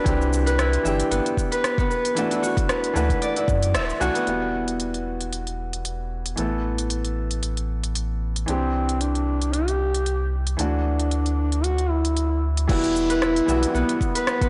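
A mellow duduk carries the melody from 8.5 s, up front and folk-flavored with vibrato and a trail of delay, in this mystical, earthy stretch of organic downtempo with a gentle swing, cut from a longer piece. Beneath it, a felt-muted upright piano plays soft, intimate accompaniment with audible action noise, its delay and sidechain pumping giving it a breathing pulse. A concert harp rings out fingerpicked acoustic arpeggios through delay, dropping away midway and returning at 12.7 s. A round, sine-like sub bass sits up front, warm and pumping with the sidechain, while a deep house kit supplies smooth hats, shaker, rim clicks and crash in a layered, produced electronic style. A deep electronic kick drives the opening, falls out just before a band accent at 3.7 s, and comes back for the closing passage, all over chords that circle through Cadd9, Dadd9, Emadd9 and Asus2 in a moderate echo-chamber and small-room ambience, with a blown-out, overdriven sound and a trimmed top end.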